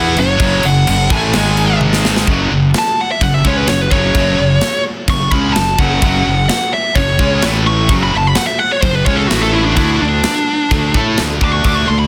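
Epic and aggressive, this heavy metal excerpt drives at 128 BPM in 4/4 in F# minor, cut from a longer piece and opening in half time before a drum fill from 1.8 to 2.3 seconds launches a lead guitar solo that runs to the end. The high-gain lead guitar sits up front with a dark, distorted tone, carrying the melody between D4 and D6. Beneath it, a bright distorted electric guitar and a scooped, heavy high-gain guitar play picked riffs in the background, joined by a double-tracked tight distorted guitar that plays only in the opening bars and returns at 9.8 seconds. A growly, punchy fingered bass with fuzz and overdrive anchors the low end, while the acoustic metal drum kit sounds polished and airy, with bright cymbals, a medium-tuned snare, a tight kick, crash and toms, all placed up front. The harmony moves from F#m through G#5, F#5 and A5 to a closing D5, set in small room ambience with a dense, heavily limited modern master.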